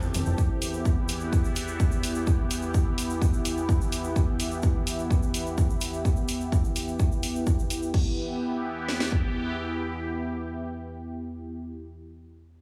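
A dark, driving melodic techno excerpt at 127 BPM in E minor opens with a bright, detuned sawtooth pad holding an Em chord up front, its chorus and sidechain pumping shared by a mellow, warbling analog drone beneath, while a grainy egg shaker ticks above. Crash, hi-hat and toms enter at 0.1 s, and from 0.4 s a heavy kick and cracking snare push forward, the electronic kit re-recorded in a large room and the whole mix sitting in light digital ambience. The shaker stops at 7.9 s and the drums by 9.2 s, leaving the resonant pad and vintage drone sustaining to the end.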